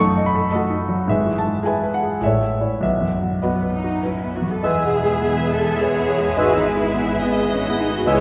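A concert grand piano leads from the first moment, up front and warm with a deep bass, sharing the melody with a rich, bowed violin section while a second violin line and a smooth, even viola section fill in behind it. This is a lush, lyrical classical passage in 3/4 with a rubato feel, moving around 97-112 BPM in E major, cut from a longer piece. At 1.1 s dark cello and double bass sections join on the bass, their soft attacks and expressive vibrato giving weight underneath, with portamento in the double basses. A barely audible timpani touch with hard mallets sounds briefly near 2.8 s. From 4.6 s the woodwinds and brass arrive: a distant clarinet and a present cor anglais add second lines, a very quiet bassoon supports the harmony, and a French horn section holds mellow sustained chords, while a pure, very quiet flute enters just after. The whole ensemble sits in a wet, resonant church-like space with a long reverberant tail.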